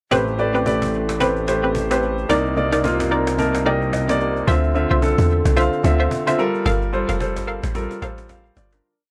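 Lightly reverberant, this soulful, late-night amapiano piece at 110 BPM swings its 16ths in A phrygian. Up-front, polished syncopated baby grand piano chords in a spread voicing add a short fill at 2.8 seconds, over hollow, bouncy square-wave stabs with chorus and delay. A fat, detuned sawtooth analog bass holds sustained notes until a deep, round log drum bass arrives at 4.5 seconds with syncopated sliding bursts, while a snappy, gritty cajon keeps a steady shaker, soft kick and syncopated rim, ending with a drum fill as the piece fades out.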